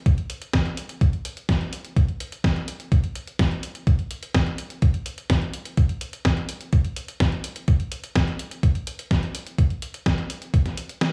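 Lightly reverberant and up front with a small-room character, this melodramatic, bittersweet italo disco excerpt at 126 BPM in a straight 4/4 pairs a thumpy, sampler-style electronic kick drum, heard from 0.1 to 10.6 seconds, with a detuned 8-bit digital drum machine supplying hi-hat and a medium-tuned snare through to 11.1 seconds.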